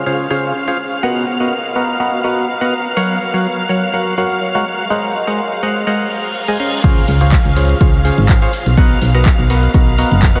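Piano house at 124 BPM in Db major, euphoric and feel-good, this short cut opens with shimmering, vintage string-machine violins holding sustained chords high above a hollow, up-front percussive organ stab riff dressed in chorus, phaser and diffuse ambient delay, both pumping against the sidechain through a dreamy mix soaked in huge reverb. A background reverse cymbal rises from 6.1 s into an impact as the drop lands at 6.8 s, bringing an overdriven, punchy analog kick and drum machine with cabasa, crash, handclaps and hi-hat. A round, mellow FM bass joins at 7.1 s, over chords moving from Dbmaj7 through Cbmaj7, Gbmaj7 and Ab9.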